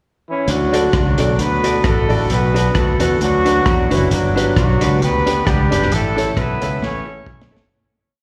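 A lightly swung ska beat at 133 BPM, with a side-stick backbeat on a muffled, lo-fi vintage drum kit, drives this cheerful, upbeat D major piece. A round, punchy fingered electric bass walks beneath dark hollow-body jazz guitar and woody, slightly detuned upright piano, both playing off-beat chops, the piano touched with slapback echo. A mellow horn section, entering with a pickup at 0.3 s, carries octave-doubled hook phrases, partly in thirds, through dub and slapback echo. The whole sounds like a live gig heard through the venue's PA in a recital hall, fading out from 5.9 s as a drum fill arrives at 6.8 s.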